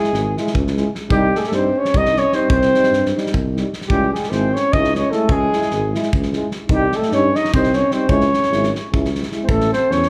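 Heard from further back in a recital hall with moderate reverb, this fiery, restless Balkan brass band fragment in 7/8 puts a mellow, lightly vibratoed flugelhorn melody up front over a punchy, close-miked alto saxophone second line, with a clear trombone and a warm euphonium accompanying in the background, a tuba bass entering at 0.1 s, and a loose acoustic drum kit of tight kick and medium-tuned snare with a rolled-off top.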